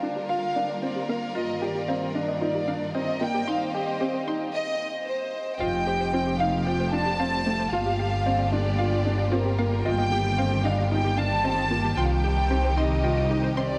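An intimate, sul tasto violin section carries the melody with tape echo over smooth bowed string chords, while a warbling, detuned lo-fi pluck arpeggiates with chorus and echo in the background and a mellow, woody upright piano plays a riff through tape echo, the whole scene washed in a huge ambient reverb until a bright, intense bowed double bass section enters up front at the drop at 5.6 s, giving this moving, cinematic piano and strings electronica its weight.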